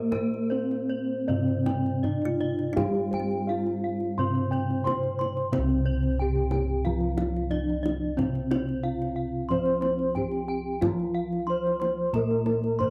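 Opening together, a mellow padded-mallet bronze metallophone melody, a wooden-mallet metallophone accompaniment, bright horn-mallet metallophone arpeggios touched with tape echo, a round, soft bossed-gong bass, airy bossed-gong arpeggios and a woody, hollow kalimba second line in the background, with a deep kendang joining at 0.1 seconds, set a serene, ceremonial Javanese gamelan excerpt in C slendro at 90 BPM with uneven beats and the metallophones' shimmering paired tuning, the kalimba and gong arpeggios falling away by 5.2 seconds while the dry, close 1970s-style studio sound with light reverb carries on.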